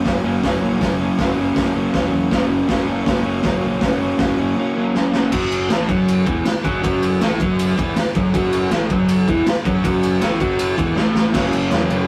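A rough rehearsal-room recording with tube saturation and moderate reverb frames this swaggering, rowdy garage rock clip, cut from a longer piece in a straight 4/4. A crunchy, double-tracked overdriven guitar sits up front with a picked riff, joined almost at once by a raw, gritty drum kit with a boomy kick, medium-tuned snare, hi-hat, ride and crash, and a rolled-off top. A dark, round fuzz bass sits in the background, and drum fills arrive at 4.9 and 11.0 seconds, just before the harmony moves from F# to Esus24 and back.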